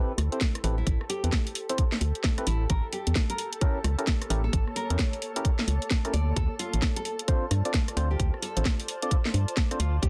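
A smooth, warbling analog pad with vintage 12-bit sampler grit and sidechain pumping opens this bouncy, late-night two-step garage excerpt, alongside dark, nasal organ stabs with a moving notch and subtle chorus. Behind them, a blurred, evolving granular cloud pad drifts in the background with its own reverb. At 131 BPM in 4/4 with 62% swing on the 16ths, a tight electronic kick and a layered garage kit with cracking snare, rim clicks and warm hats sit up front with a small-room character. A hollow, organ-like FM bass with a fast, decaying attack sits up front alongside the drums. From 0.8 s a full-bodied, fingerpicked nylon-string guitar adds a delayed melody, while the harmony moves from Am9 through A7b9 to Dm7 under light reverb and a dense, heavily limited master.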